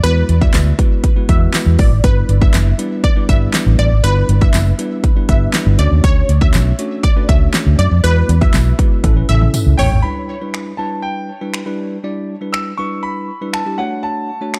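An upbeat, euphoric dance-pop cut on a straight 4/4 groove, taken from a longer piece, opens with an electronic, layered pop kit of punchy kick, fat snare, metallic hats, snaps, handclaps and toms, overdriven and up front, plus a close, dry tambourine jingling in the background from 0.5 s. Underneath, a vintage muted fingered electric bass sits round, amped and foam-muted, pumping with the sidechain through the drop until 10.0 s. A bell-like tine electric piano supplies clean, direct chords over Eadd9, G6 and Dmaj7 throughout. The lead is a lush, detuned sawtooth unison pluck with a fast attack and filter sweep, colored by phaser, tape echo and sidechain pumping. It carries the melody until 9.9 s, through a drum fill that begins at 9.0 s. At 9.8 s a brilliant concert grand piano takes over the tune high in its range, polished and short in sustain with tape echo, while the production as a whole stays dark and warm in digital ambience.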